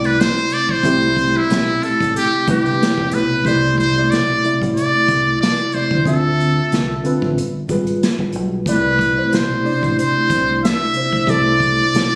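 R&B with a neo-soul lean, this relaxed, sensual piece moves at 92 BPM in 4/4 with a light sixteenth-note swing in C major, cut from a longer performance. A trumpet with a metal mute carries the melody from E4 to E5 and is heard as a solo over the opening 3.4 seconds. Its buzzy, breathy tone has light vibrato, a soft attack and a slapback echo, and it sounds intimate and up front. A mellow tine electric piano sits close and clean beneath it, spanning C3 to E5 and adding a short fill at 11.9 seconds. Underneath, a deep dub fingered electric bass supplies a dark, round low end between F1 and D2, while an acoustic drum kit played with bundle sticks sounds distant and roomy, with hi-hat, a tight kick and a medium-tuned snare. The harmony rests on C69 before moving through Dm9 and G7b9 and returning to C69 at 8.7 seconds, all set in a small room ambience with studio reverb and compression and a casual, phone-captured character.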